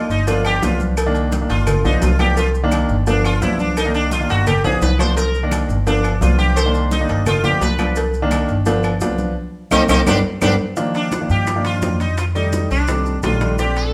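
Afro-Cuban jazz at a brisk 171 BPM in C harmonic minor, sophisticated and fiery, cut from a longer piece, with a bright, buzzing sitar soloing up front over sympathetic-string shimmer until 10.8 seconds. A clear, polished concert grand piano comps through the G7 and minor-seventh changes, while a dark, woody pizzicato upright bass sits up front, and congas, cowbell with bongos, ringing agogo bells with timbales and grainy maracas churn in the background, joined by very quiet claves. Drum fills arrive at 4.6 and 9.4 seconds, the second joined by a band accent, before the harmony shifts to F13sus4 and F13, all bathed in a wet, large studio reverb.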